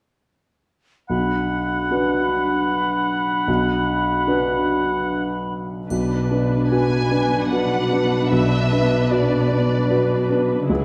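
Cinematic, emotional film score for orchestra, bittersweet and sorrowful, moving in a slow, rubato 3/4 at 75 BPM in B dorian over a B minor opening chord. A clear, open baby grand piano sits up front as accompaniment from 1.1 seconds, joined at first by a second line shared among an airy, crisp-edged concert flute heard from a distance, a close-miked oboe with vibrato in classical style, and a warm clarinet tucked into the background. At 5.9 seconds the second section begins: a lush, smooth viola section with even vibrato fills in the accompaniment, a dark, woody cello section takes the bass, and a triangle glints faintly in the background. From 6.7 seconds a bowed violin section carries the melody, expressive and lush with vibrato but set at a distance. A wet scoring-stage reverb and a dark, warm production give the fragment, cut from a longer piece, a spacious and melancholy glow.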